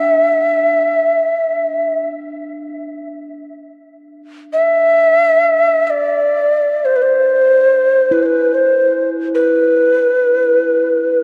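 In free time, this spacious, meditative world piece, cut from a longer work, centres on a breathy, mellow cedar flute in the Native American style that carries the melody throughout, close-miked and up front with a woody chiff, crisp attack and gentle vibrato. A bronze singing bowl adds a metallic, ringing texture with slow beating, sounding from the start until 2.1 seconds and returning at 8.1 seconds. A huge ambient reverb and the warbling pitch drift of worn cassette tape give the whole recording a hazy, aged quality.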